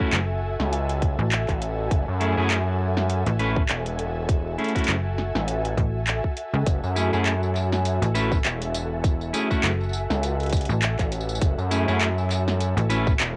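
This gritty, funky glitch hop passage opens at once on a tight, up-front electronic kick, clean electric guitar stabs and an ethereal, airy pad, all sitting on a single F#m9 chord in F# minor at 101 BPM with a 16th-note swing of 57%. Within the first second a slap-like FM bass with a snappy, metallic attack and a drum and bass kit of handclaps, hi-hat, woody snare and tambourine join in. A gritty driven synth bass follows at 0.6 seconds, its nasal, aggressive sawtooth tone pushed through tube saturation and placed up front alongside the FM bass. The guitar stabs carry vintage 12-bit sampler grit, sidechain pumping and tape echo, while the pad warbles through ensemble chorus and its own reverb, also pumping with sidechain. The whole piece has the light reverb of a home recording on cassette, and it runs as one unbroken section cut from a longer piece.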